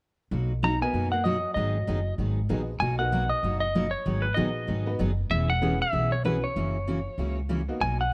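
This swinging, playful country excerpt in the western swing style moves from a short opening passage into a longer second section, cycling through Bmaj7, G#m7, E6 and F#7 harmony. An up-front clean lap steel guitar carries the melody with slide, its compressed, dark electric tone sitting high over the band. Beneath it, a woody, growly upright bass plays pizzicato on steel strings with a thumpy presence, while a picked dreadnought acoustic guitar adds warm accompaniment with audible finger squeak. A jangly, metallic tack piano contributes bright, percussive accompaniment with a vintage character and short sustain. In the background, a hollow-body jazz guitar plays a clean, picked second line from 0.6 to 2.1 seconds, and light reverb surrounds the ensemble.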